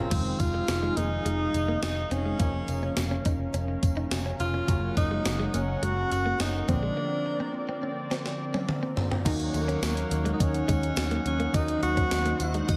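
Nostalgic and urgent, this 1980s-style pop excerpt at 105 BPM in Eb dorian puts a breathy, punchy subtone tenor saxophone melody with scooped notes up front, over a gated digital drum machine with a thumpy kick, a faint jingly tambourine, a dark foam-muted picked bass, detuned sawtooth analog keys, a warbling chorused pad and a clean direct-recorded guitar riff; a break arrives at 7.0 s with a drum fill at 8.1 s before a shimmering FM bell line slips in at 12.4 s, the whole mix soaked in dreamy plate reverb.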